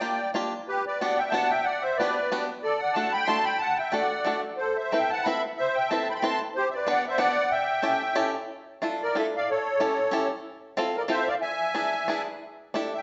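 This musette waltz excerpt moves at 183 BPM in 3/4, with a swung, rubato lilt and a bittersweet, whirling mood. The musette accordion carries the melody from G4 to C6, its reedy, shimmering musette tuning sitting up front with a smooth, dark edge. Beside it, an acoustic bluegrass banjo played with fingerpicks supplies the accompaniment, twangy and percussive, also up front. The harmony opens in G major, passing through chords such as Gmaj7, D and Amadd9 before shifting to D minor at 8.5 s, where Dmadd9, Fmaj7 and E7 lend a more wistful colour and the passage comes to rest on an unresolved A7sus4. A recital hall reverb gives the pair a wet, roomy sound, and the overall production is dark and warm, with both instruments playing through to about 13 seconds.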